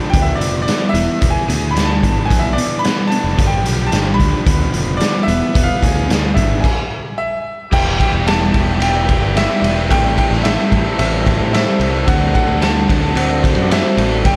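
Indie rock with a cool, moody feel, where a bright, woody upright piano carries the melody with slapback echo over an overdriven guitar riff, a twangy, slightly broken-up second guitar through a small old amp, a growly picked bass and an up-front raw garage kit with dark cymbals and a punchy kick, joined at 3.4 seconds by a quiet tonewheel organ with key click and slow rotary swirl; the band pauses in a stop at 6.6 seconds before all the parts carry on together into the second section from 7.7 seconds, in a cut from a longer piece.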